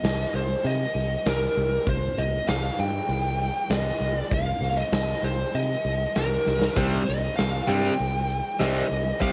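This short hard rock clip opens with a smooth, dark overdriven lead guitar carrying the melody over a growly fingered electric bass and a huge arena drum kit, all three up front from the start. The mood is aggressive and driving, set at 98 BPM in a straight 4/4 and centred on C minor, with the tuning pitched slightly high at A4 = 444 Hz. The drums sound acoustic and roomy, with a punchy kick, a medium-tuned snare, hi-hat and bright splash cymbal, and both the drums and the lead carry a cassette tape colour. A drum fill at 6.5 seconds leads into two picked rhythm guitars entering at 6.8 seconds: a bright, hollow-body overdriven semi-hollow guitar pushed up front with its own tape grain, and a sludgy distorted guitar tucked very quietly beneath it, both playing the riff. Light studio reverb frames the whole piece, which has the raw, homespun character of a cassette home recording and is cut from a longer piece.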